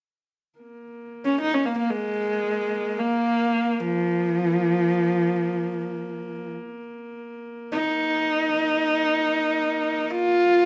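A distant horsehead fiddle opens at 0.6 s, holding a rich, husky drone on Bb3 with vibrato and portamento, bowed on horsehair strings by a single player. At 1.3 s a second horsehead fiddle enters up front with a clear, focused melody between F3 and F4, shaded by its own vibrato and sliding portamento. This Mongolian folk piece moves in free time, and its mood is vast and windswept, with the fiddle's melodic line set over the sustained low tone. The two players sound as if they are performing live in one studio room, surrounded by a wet but short reverb, with tuning set to A4 = 443 Hz. Both fiddles carry on together until 10.7 s, where this fragment of a longer piece ends.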